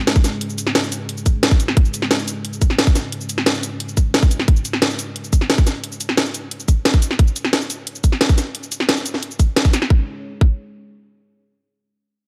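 A tight, overdriven electronic kick sits up front in this tense, futuristic slice of dark technical drum and bass, alongside an overdriven, layered kit of cracking snare, bright hi-hats and shaker, while a deep, moody analog pad of detuned sawtooth and triangle tones with a sub octave holds slow-attack chords under chorus and sidechain pumping, with a filter sweep running until 9.9 seconds, all framed by light reverb and digital ambience.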